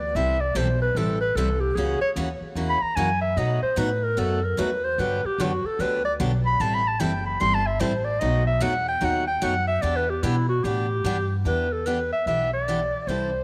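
A moderate plate reverb rounds out this bittersweet, fiery fragment of acoustic string swing, where a close-miked clarinet soloing with vibrato, subtone and scooped notes sits up front until 11.4 seconds, over a dark, woody, thumpy gut-string upright bass played pizzicato and a bright, full-bodied picked jumbo steel-string guitar.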